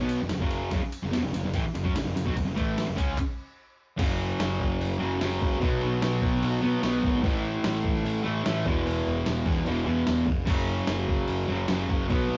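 Garage rock at 148 BPM with a raw, swaggering mood: a bright, double-tracked fuzz guitar riff sits up front over an overdriven picked bass and a gritty, compressed soul sampler-style drum kit with thumpy kick, handclaps and cymbals, breaking for a stop from 3.2 to 4.0 seconds before the second section drives on, all caught in a rough, dull-topped rehearsal-room sound with moderate reverb.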